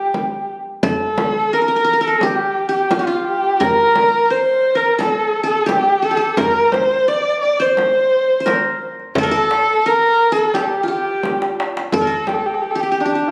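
Captured on a phone in a moderately reverberant recital hall, this melancholic, soulful excerpt of Turkish makam ensemble music in G makam ussak moves at 86 BPM in a straight 4/4: a dark, expressive bowed kamancheh sits up front with the melody, its soft attacks, vibrato, portamento and smooth top giving it a singing quality, while a quieter, bright-edged qanun played with fingerpicks adds a second line on triple strings, a large, deep frame drum supports from underneath, and a clay-shelled darbuka with a natural skin and a compressed, saturated tone enters at 0.8 s, before a drum fill at 11.2 s leads into a brief new section at 11.9 s.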